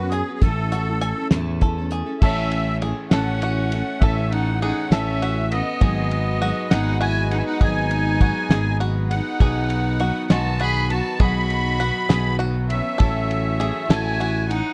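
A dark, warmly produced indie folk excerpt in a hopeful, anthemic 6/8, where a reedy, shimmering musette accordion carries the melody over picked acoustic guitar, twangy fingerpicked banjo arpeggios, a soft, floating string section, an up-front picked electric bass and a cloth-damped, thuddy drum kit with a fat snare, before a distant gut-toned fiddle and a very quiet, brilliant upright piano join at 2.2 seconds to build the arrangement.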